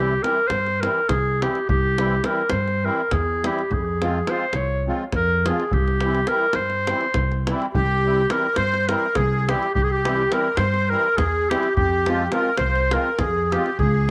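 A bright, classically styled clarinet carries the solo melody up front with a slapback echo over a shimmering, vintage-toned musette accordion, a woody pizzicato upright bass and a deep davul in this bittersweet, virtuosic fragment of Balkan wedding-band folk in 7/8, where the chords shift between C and F minor, a reedy, close-miked, dry second accordion line joins at 7.7 seconds, and a moderate spring reverb and small-room ambience surround the band.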